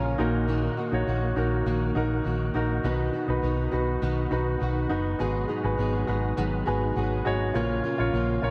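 A dreamy mix soaked in moderate cathedral reverb frames this short cut from a longer piano-driven pop piece, warm and anthemic in mood, moving through D#m/A#, B, G#m7 and A#m. A polished, present grand piano carries the accompaniment up front beside a round, punchy hollow-body electric bass, while a dark, woody fingerpicked steel-string acoustic guitar with old strings plays a riff through ensemble chorus. A very quiet tonewheel organ holds clean, clear chords with key click and a fast rotary speaker, and the piano adds a fill from 6.4 to 7.6 seconds.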